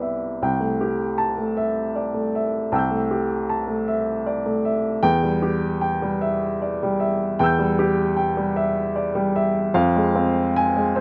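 A woody, polished upright piano plays alone and up front in this intimate, tender neoclassical minimalist fragment, moving in a rubato 3/4 around 77 BPM and tuned to A4 = 439 Hz, spanning C2 to G6 with a touch of slapback echo in a dry outdoor setting as the harmony passes from Am7/C at 0.4 seconds to Em at 5.0 seconds and Fm at 9.7 seconds.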